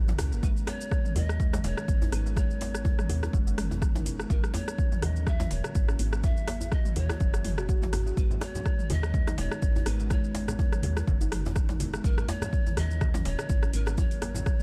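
A very quiet, ethereal pad holds sustained chords while a plucked kalimba, tucked in the background with dub echo and sidechain pumping, spins arpeggios over a round FM bass, opening this driving, earthy afro house excerpt at 124 BPM in G# minor, swung on the 16ths. The punchy, overdriven electronic kick sits up front beside a deep house kit of metallic hats, rim clicks, shaker and toms, with a close, dry djembe rattling behind and a distant bamboo pan flute with chiff and vibrato drifting through dub echo over G#m11 and F#7 chords. Ringing congas slip in at 8.3 s, very quiet beneath a dark production.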